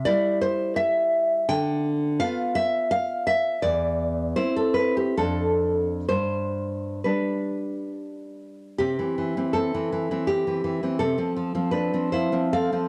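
Moving in a rubato 3/4 that drifts between 63 and 87 BPM, this short cut from a longer romantic piece for solo classical guitar sits in a sunny, nostalgic C major, wandering from C through G7/D, C/E, Dm7/F and G before a new passage at 8.8 seconds settles on C and F/C. The fingerpicked nylon-string guitar plays alone up front across its full 12.9 seconds, reaching from E2 to G5 with a full-bodied, deep classical tone. A cassette tape coloring and light studio reverb give the home recording an intimate, keepsake feel.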